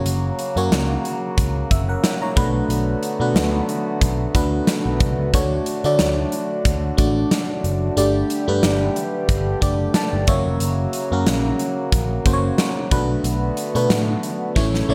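1980s-style pop with an uplifting, nostalgic mood, this short cut from a longer piece moves in 4/4 with a light swing on the sixteenths. An FM electric piano sits up front with a glassy, bell-like attack and a noise layer, its decaying tones coloured by chorus and phaser, and it plays short fills around 9.6 seconds and again at 14.6 seconds. Beneath it, a pedal harmonium holds reedy, breathing chords at a lower level. A vintage muted picked electric bass gives a dark, round, punchy foundation through an amp. A big rock drum kit enters at 0.1 seconds with a punchy kick, a medium-tuned snare and hi-hat, up front in a big room with gated reverb, and closes on a fill. The harmony cycles through F#, Bm7, Dmaj7 and Gsus2 before returning to F# and Bm7, all set in a light studio reverb.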